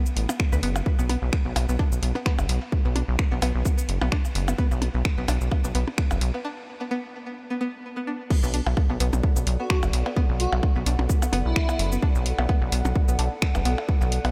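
Cut from a longer piece, this minimal techno track has a light reverb and a hypnotic, cool mood, running at 129 BPM in 4/4 with a swung sixteenth feel in B minor. An overdriven, punchy electronic kick sits up front, joined by a tape-warm analog drum machine playing crash cymbal, finger snaps, hi-hat and shaker, while electronic percussion blips with tape echo flicker in the background. A rubbery, hollow square bass, also up front, pumps against the kick, and a twangy, string-like resonator pluck carries the riff through chorus, phaser and delay. After a break, the drop arrives at 8.3 seconds on a Bm7 chord, and a warbling, nostalgic lo-fi pad with a dark tone and built-in reverb slips in at 8.7 seconds. An airy, dreamy lead with chorus, vibrato and tape echo floats softly in the background from 9.6 seconds for a brief melodic phrase.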